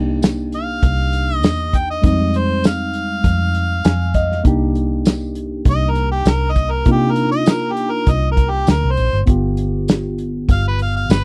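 A reedy, clean electric piano with a phaser and a dark, round, foam-muted electric bass open this brooding, soulful straight-eighth soul blues excerpt in C minor at 99 BPM. At 0.2 seconds an up-front acoustic soul drum kit joins with kick, snare, hi-hat and tambourine and a rolled-off top, and at 0.6 seconds a present, overdriven harmonica enters with a light-vibrato solo over Cm7, Fm7 and G7 chords, with a brief electric piano fill at 3.5 seconds in a dry room.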